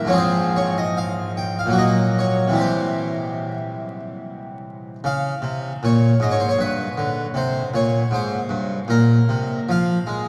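A slow triple metre at about 71-80 BPM, played with free rubato, carries this grave, introspective fragment of a baroque-style suite movement for solo harpsichord. The French-style instrument, plucked and full with two sets of strings, sits up front across a range from G2 to G5, moving through harmonies such as Fm/Ab, Gb/Bb and C before a new passage at 5.0 seconds turns to Db and G and closes on Fm. A long cathedral reverb and a layer of vinyl crackle surround the playing, lending the short excerpt an aged, cavernous air.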